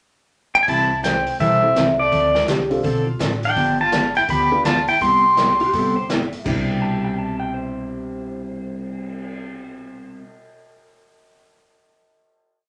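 A down-home, swinging western swing piece in C major at 166 BPM, where an up-front pedal steel guitar with fingerpicks and volume swells carries a motif-based melody from 0.5 s while a biting fiddle adds a harmony line mostly in thirds and a clean lap steel slips in answering blues licks. Underneath, a bright jumbo acoustic guitar picks out four-to-the-bar rhythm with audible finger squeak, a woody gut-string upright bass plays a two-beat root-and-fifth line with walk-ups, a mellow vintage upright piano comps with close voicings in the background, and a distant, roomy drum kit keeps time on the hi-hat with a backbeat and a punchy kick. After a short pickup, the tune moves from C6 through Dm7 and G7 to Cmaj7 and settles on a final chord from 6.5 s, all in a club reverb.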